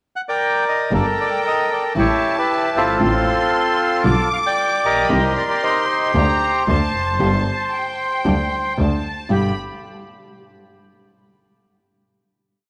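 A reedy bandoneon opens this short, dramatic and tense tango at 0.2 s with a pickup into a motif-based melody in period phrases, colored by tape echo, before a lush, distant bowed violin section enters at 0.9 s with a vibrato-rich counter-melody alongside a fingerpicked flamenco guitar playing short chords with audible finger squeak and an earthy, bowed double bass marking a marcato tango rhythm in two with tube saturation, all moving at a rubato 115 BPM through a G minor progression in a moderate plate reverb before settling on a final G chord at 9.3 s.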